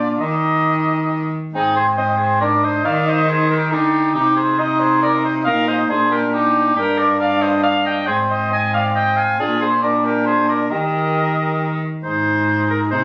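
A small reed-and-string consort begins together from the first moment: a clear oboe carries the melody, a mellow cor anglais weaves a second line, a bassoon with a soft attack fills in the accompaniment, and a single bowed cello supplies the bass. The piece is a stately, courtly renaissance-style dance in a straight three-beat metre, and this excerpt is cut from a longer work. The oboe's tone has a smooth top, and both it and the bassoon carry a light vibrato. The cor anglais also has vibrato and sits distant and roomy, while the cello's rich gut-string sound has a reedy edge in period style. The harmony moves through a progression before a new section opens at 12.0 seconds, and the sound, captured on a phone in the room, carries light studio reverb and compression.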